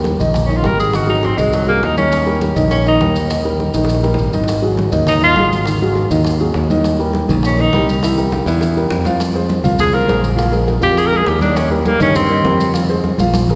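Sunny and lively, this short Afro-Cuban jazz excerpt moves in a straight four with a breathy, vintage-toned tenor saxophone soloing up front from 0.5 seconds, its vibrato adding a singing edge to the melody. Underneath, a dark, mellow baby grand piano supplies the chords, cycling through Eb, Ab7, C7, Fm and Bb5, while a bright, growly fingered electric bass sits directly up front in the low register. The percussion is layered lightly: tight, high-tuned bongos stay in the background, thin-skinned congas add a very quiet, bright pulse, and grainy maracas ring softly as if in a small room. Drum fills mark the phrases around 3.7 and 8.3 seconds, and again near the close at 13.0 seconds. The whole ensemble is bathed in a long, wet church reverb that gives the band a spacious, hall-like glow.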